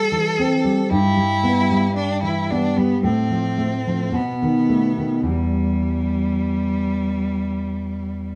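A bowed cello and a nylon-string guitar begin together in this brief cut from a longer romantic duo in E minor, moving at a slow, rubato 50-57 BPM in 4/4 with a yearning, melancholic mood. The cello sings the melody up front with a rich, focused, close tone and expressive vibrato, while the dark, full-bodied thumb-plucked guitar supports it with deep classical accompaniment, a touch of finger squeak audible as the harmony moves from Am7 through Em/G, F/A and B7 to settle on Em. The pair sound as if playing live in one small room, wrapped in a wet studio reverb.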